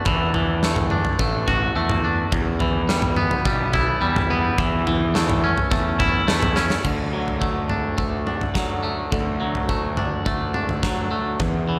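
Post-rock with a cathartic, cinematic mood, this short excerpt, cut from a longer piece, moves at a steady, straight 4/4 pulse. A bright, twangy electric guitar sits up front playing clean, picked arpeggios, its tape echo trailing each note. Beneath it, a fuzz-soaked picked electric bass adds a punchy, overdriven low end, while a huge arena drum kit drives the music with a punchy kick, a medium-tuned snare, toms and bright crash cymbals in a hall-like space. The harmony moves from D through Em and A/E, and a drum fill at 6.6 seconds ushers in a new section that returns to D at 6.8 seconds. Studio reverb gives the whole a spacious, expansive sheen.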